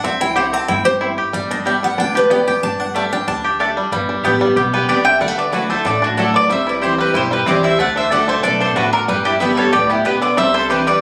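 Captured on a phone in a small club room, this bluegrass excerpt has a moderate, short reverb and compressed punch, and it is clipped from a longer piece. It moves at 186 BPM in straight 4/4 and G major, with a virtuosic, driving mood. A dreadnought steel-string acoustic guitar with fresh strings takes a picked solo over the opening 3.9 seconds. Alongside it, a twangy, percussive banjo plays arpeggios up front, and a thumpy, woody upright bass sits low in the mix. Up front, a bright mandolin adds picked stabs throughout. At 4.7 seconds a second, mellow mandolin takes the melody as the most prominent voice, while a clear, earthy fiddle with light vibrato plays a distant second line in the background. The chords move through C, G, Gsus2, Dadd9 and D before landing on Cadd9.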